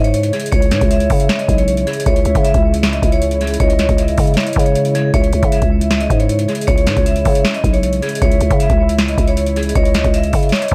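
An echo-heavy digital mix with vinyl crackle frames this melancholic, dark trap excerpt at 156 BPM in a half-time feel, resting on a single C# minor chord. Up front, a booming analog drum machine with overdrive and dub echo pairs a deep kick, crisp snare and metallic hats with a growling, buzzy 808-style bass. A ringing vibraphone with medium hard mallets and fast motor vibrato carries the melody through dub echo, while a hollow, woody clarinet-like synth lead with chorus and tremolo and a moody, detuned analog pad sit in the background for the full 10.7 seconds.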